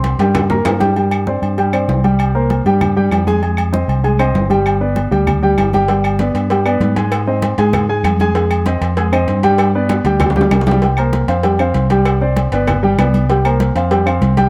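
A fiery, passionate salsa at 195 BPM opens with a drum fill over an up-front concert grand piano with deep bass and short sustain and a dark, punchy, amped fingered electric bass, while ringing metal-shell agogo bells and timbales, bright, dry congas in the background, woody claves and round, low-tuned cowbell and bongos (which drop out at 0.9 seconds and return at 5.9 seconds) drive the chords from C5 through Fm7, G and Ab before a second fill at 9.9 seconds leads into a new section under light reverb.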